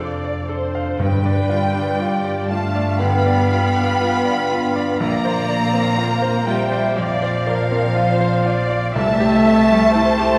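Cinematic, emotional film score for orchestra, moving and hopeful, drifting rubato at 60 BPM in 4/4 through F6, G7, Bbadd9 and C6 chords, cut from a longer piece and set back in a reverberant scoring stage. A lush violin section carries the melody with focused vibrato, shadowed by a clear, more distant second violin line and a mellow, hollow flute ensemble, while a brilliant, polished baby grand piano and smooth violas accompany over dark, soft-attacked French horn chords. Cellos and expressive double basses anchor the bass, a very quiet thumb-plucked harp rings out arpeggios, and timpani struck with medium mallets enter briefly at 1.0 s and again at 9.0 s.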